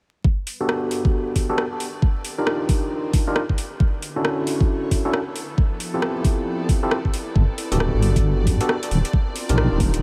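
Lightly reverberant and dusted with vinyl crackle, this sunny, bouncy two-step UK garage cut at 135 BPM swings on a knocking electronic kick and a garage kit of metallic hi-hats and rim clicks, both overdriven, while gritty, barky electric piano stabs through a combo amp with low-pass filtering and delay sit up front over dark, sul tasto strings that fade in with sidechain pumping across Gmaj9, Ebmaj9, Dmaj9 and Fmaj9, before a deep, detuned wobble bass with chorus and tube saturation arrives at 7.4 s.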